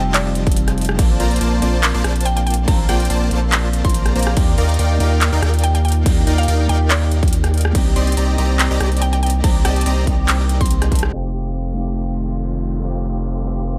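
The excerpt opens mid-drop in a playful, lush future bass groove at 142 BPM in a half-time 4/4 feel. A woody, round synth pluck with a mallet-like, FM character carries the melody in the background, bathed in chorus and delay. A punchy, detuned supersaw stab drives the riff and sweeps through its filter. Under them, an electric guitar at the edge of break-up plays picked, compressed accompaniment with ensemble chorus, and a deep, saturated sine sub bass sits up front. The kick is layered and punchy, while the big-room kit adds crash, handclaps, metallic hats and rim clicks, and sidechain pumping makes the pluck, guitar, stab, bass and strings breathe with the beat over F7, Bbmaj9, Ebmaj9 and Cm9 chords. After a band accent, the drop gives way at 11.1 seconds to a filtered passage where a rich, bowed studio string section holds sustained chords with vibrato as a faint downlifter sounds in the background, all in a dry, close sound.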